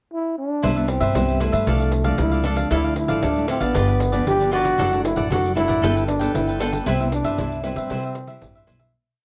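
Lightly reverberant and intimate, this playful, joyful samba and choro piece opens with a breathy, whispered trombone pickup at 0.1 seconds, and at 0.6 seconds crisp cavaquinho strumming in sixteenths, dark fingerpicked nylon-string guitar with thumb bass and finger squeak, a growly, woody pizzicato upright bass and jingly pandeiro join beneath the trombone's up-front, scooped, motif-based melody, before the piece fades out from 6.9 seconds.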